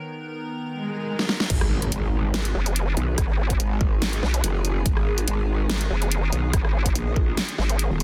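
A growling, detuned growl bass sits up front in this menacing, heavy wobble dubstep excerpt in G# minor at 143 BPM with a half-time feel, arriving with the drop at 1.5 seconds alongside a punchy electronic kick, while a nasal, resonant vowel-sweep wobble bass joins at 2.5 seconds, a dubstep drum kit with a huge snare, hi-hat, rim click and crash sits up front, background swell and impact effects mark the build-up and the drop, and an evolving, morphing wavetable pad with phaser and sidechain pumping holds sustained chords in the background from the start, all within a dense, heavily limited modern master.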